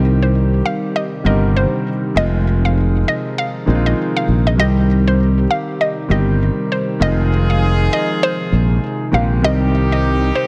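A clear concert grand piano and a growly, up-front fretless electric bass open this sultry, smooth afrobeats excerpt, with the bass sitting low and direct under a swung sixteenth-note feel in 4/4. The piano is intimate and polished, with audible action noise and a long sustain, while the bass carries a lush chorus. Almost at once a hollow, bouncy square-wave pluck takes the melody in a high register, its detuned tone and fast attack colored by chorus and digital delay. Behind them a soft, flute-like pad holds mellow sustained chords with chorus, sitting in the background as the harmony moves between Cm and Fm7. At 7.0 seconds a punchy horn section with a smooth top enters on a tight second line. A studio reverb gives the whole mix a sense of space.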